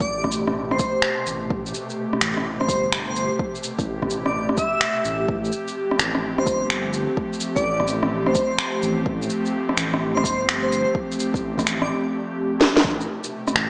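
From the start, this melancholic, nocturnal future garage excerpt in A minor at 127 BPM brings in everything at once: a swung kit of electronic shaker, rim click, finger snaps and a cracking, tape-tinged snare sits up front over an overdriven deep kick, while a dark, rumbling detuned saw bass holds the low end. A breathy, warbling pad with chorus and sidechain pumping carries the Am9 and Fadd9 chords, and above it an airy, bright lead with vibrato, phaser, chorus and analog delay sings a dreamy high melody until 11.9 seconds. A drum fill at 12.6 seconds leads back toward Am9, and the whole mix sits in a lush hall reverb with a small-speaker sound.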